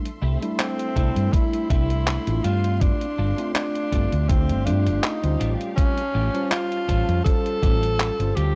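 A woozy, faded vaporwave fragment cut from a longer piece drifts along at an unhurried pace with a light swing, moving from a C6 chord to G7sus4. A mellow tine electric piano with lush chorus carries the accompaniment while a round, punchy hollow-body electric bass sits up front, and an electronic kick with a thumpy, tape-warm sampler character enters at 1.0 s and drops out at 7.8 s. A detuned 8-bit drum machine adds handclaps and hi-hat, both kick and claps set in studio reverb. A clean, picked electric guitar riff, compressed and roughened by ensemble chorus and vintage 12-bit sampler grit, hangs in the background beside a bowed symphonic string section holding sustained chords. From 0.6 s a breathy tenor saxophone takes the jazz-style solo melody, scooping into notes with light vibrato and trailing tape echo. The whole has a dry, gritty hardware sound with transformer saturation.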